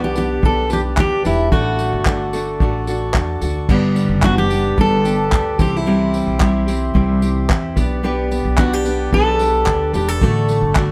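Heard from further back in a moderately reverberant studio, this sunny, carefree acoustic pop excerpt at 110 BPM in G major sets a full-bodied, fingerpicked jumbo steel-string guitar melody with plate reverb up front over a classical nylon-string guitar accompaniment, a bright picked steel-string guitar's arpeggios with finger squeak and a hand-pumped harmonium's reedy, nasal sustained chords in the background, a woody, thumpy pizzicato upright bass with gut strings, and a cloth-damped, thuddy drum kit that enters at 0.2 s with a tight kick, dark cymbals, handclaps and tambourine.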